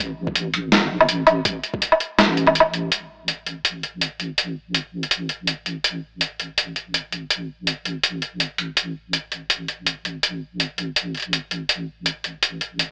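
A deep, wobbling bass opens this dark, heavy half-time drum and bass passage at 164 BPM, its rounded sine-and-triangle tone sustained and treated with chorus, sitting low around A1 and lower in the mix than the drums. A thumpy, overdriven electronic kick joins at 0.3 seconds and is joined almost at once by a sampler-style boom bap kit whose hi-hat, medium-tuned snare and woodblock sit up front, compressed and re-recorded in a small room. The kick drops out at 2.5 seconds for a brief break, after which the kit and bass carry the longer second section to the end of the cut. A lightly swung sixteenth-note feel gives the half-time groove a loose, head-nodding sway. The overall sound is dry and lo-fi, with only light reverb and a cassette-tape and AM-radio character that adds a grainy, hardware-driven edge.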